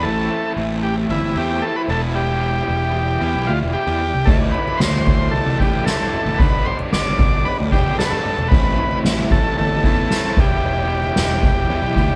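In a straight 4/4 feel, this mysterious, trippy psychedelic rock piece sets a buzzy, up-front combo organ melody with light vibrato over a round, punchy fuzz bass and a bright, double-tracked garage guitar riff with overdrive and tremolo sitting in the background, while very quiet, mellow, flute-like tonewheel organ chords turn through a slow rotary speaker, the band playing live in one stone room with moderate reverb; a soft-mallet drum kit with a boomy kick, fat snare and dark ride cymbal enters at 4.3 s, and low-tuned, ringing congas played with soft hands join at 4.5 s.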